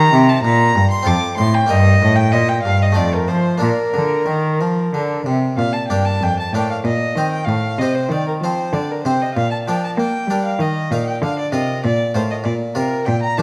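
Serene and radiant, this baroque-style sonata movement with continuo moves in an unhurried three-time, taken from a longer piece. A rich violin carries the melody with expressive vibrato and portamento, sounding somewhat distant yet up front, while a bright, airy harpsichord in the Italian style plucks the accompaniment and an intense, smooth-topped cello, the most prominent part, bows the bass line. All three play throughout the 13.4 seconds, bathed in moderate recital hall reverb, with a new section arriving at 5.6 seconds.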